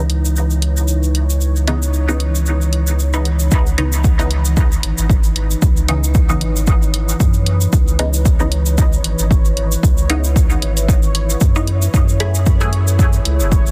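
A dense, heavily limited mix with little reverb carries this deep, hazy dub techno excerpt in C# minor at 114 BPM with a light 16th-note swing, where a dark, detuned ambient pad with chorus and reverb and a round, soft sub bass pulse under sidechain pumping, a muted, wave-folded chord stab with phaser and dub echo gets a filter sweep until 3.5 s, an overdriven electronic hi-hat sits up front beside grainy, close cabasa, a punchy, layered electronic kick with the same drive enters at 3.5 s, a bubbling, resonant stepped-filter texture joins in the background at 4.8 s, and the harmony shifts from C#m9 to F#m9 at 11.9 s.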